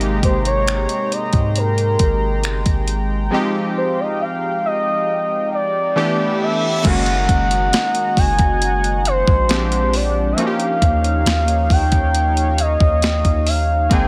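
A smooth, gliding portamento lead carries the melody through chorus, vibrato and digital delay in this tender, dreamy contemporary R&B excerpt at 68 BPM, tuned to A4 = 435 Hz. Beneath it, sawtooth analog keys with a filter sweep and a mellow sub-octave pad move through lush chords from Abmaj7 to Eb9, while a deep, sine-like 808-style bass and a crisp, thumpy 8-bit drum machine of kick, snare, hi-hat, finger snaps and crash sit up front. A very quiet, bell-like celesta joins at 4.2 seconds, and an electronic reverse cymbal at 6.2 seconds ushers in a new section in a dry, close mix.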